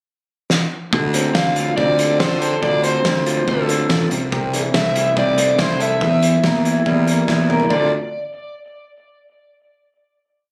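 Indie rock, moody and restless, this short whole piece opens on a drum fill at 0.5 s from a loose, punchy kit with a fat snare, before a dark, lo-fi guitar through a small old amp picks arpeggios, round fuzz bass sits up front, and a bright, crunchy overdriven lead with tape echo plays song-like motifs from 1.3 s over Dm7, Am/C and Edim, landing on a final Dm7 at 7.7 s, all captured on a phone in a room with club reverb.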